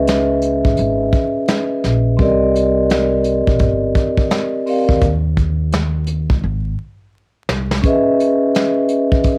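Recorded at home onto cassette, this short cut from a longer boom-bap hip-hop piece carries light reverb and a bed of vinyl crackle, setting a moody, dark atmosphere. Up front, a vibraphone played with soft mallets and its motor off supplies the accompaniment. Its metallic, ringing tone is mellow and warm, shaped by high- and low-pass filtering and cassette-tape coloring as it moves from C#m7 to Cm7. Beneath it, a pizzicato upright bass with steel strings sounds woody and warm, playing until 7.8 seconds. A soft brush drum kit from a small room, also given a cassette-tape character, lays down a swung groove with a punchy kick, a medium-tuned snare and hi-hat. A break arrives at 5.0 seconds, and a drum fill from 6.4 seconds leads into a closing C#m9 chord.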